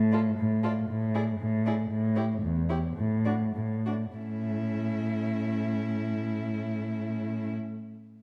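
Heard in a moderate recital-hall reverb, this brief cut from a quick, graceful and spirited classical-period string quartet movement in A major moves in 2/4 at 92-120 BPM with a rubato feel, slowing between 1.4 and 4.2 seconds. The up-front cello carries the bass with a warm, expressive vibrato and portamento, while a close, background violin sings the melody with a soft attack and gliding portamento. A second violin shapes an expressive second line, and a rich, smooth, even viola supplies background accompaniment, all four bowed by single players before the music settles onto an A chord at 4.2 seconds.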